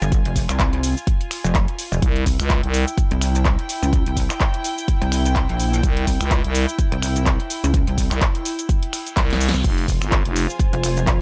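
A swung 126 BPM bass house groove in 4/4 drives this gritty, swaggering 11-second cut, with a punchy, up-front electronic kick entering at 0.1 s over a house kit of snare, bright hi-hats, handclaps, finger snaps, cabasa and crash, plus a short drum fill at 9.2 s during a very quiet reverse cymbal. A pulsing, saturated pluck wobble bass with chorus and sidechain pumping carries the low end through Fm and C, joined in bursts by a thick, growling FM bass. Soft, floating bowed strings hover above, and a deep, moody detuned pad with reverb enters in the background at 10.3 s, shortly after the harmony returns to Fm.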